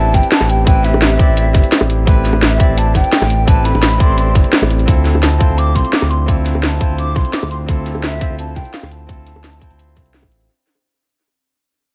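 Lush, soulful liquid drum and bass fragment, cut from a longer piece, in which a breathy concert flute with vibrato and analog delay carries the expressive melody over barky tine electric piano echoing on tape, a glassy, ethereal FM pad drifting in the background, and a smooth, detuned synth bass up front, all driven by a tight, layered electronic kick, a drum kit with cracking snare and metallic hats, and high-tuned bongos played with soft hands, in an echo-heavy, dry mix that begins fading out at 4.9 seconds.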